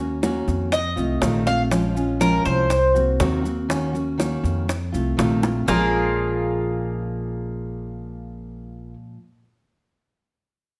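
A moderate, roomy studio reverb surrounds this nostalgic, sultry fragment of Cuban son and guajira, cut from a longer piece. Up front, a bright, metallic Cuban tres with doubled strings plays picked arpeggios as a solo through the opening section. Beside it, a full-bodied, fingerpicked nylon-string guitar with audible finger squeak and a woody, thumpy pizzicato upright bass carry the minor-key changes. In the background, round, low-tuned bongos played with hard hands and grainy maracas keep time until a drum fill at 5.4 seconds, and both stop at 5.8 seconds as the closing section begins.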